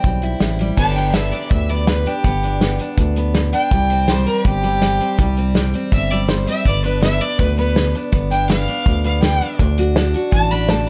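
Sunny and nostalgic, this brisk honky-tonk and classic country excerpt features a biting, bright fiddle with light vibrato taking a solo from 0.8 seconds over a full-bodied picked steel-string acoustic guitar with audible finger squeak, a growling, thick FM bass, and an up-front acoustic drum kit with dark cymbals, a punchy kick and bundle sticks, all captured close and detailed with little reverb as the chords move from C to G and on to D.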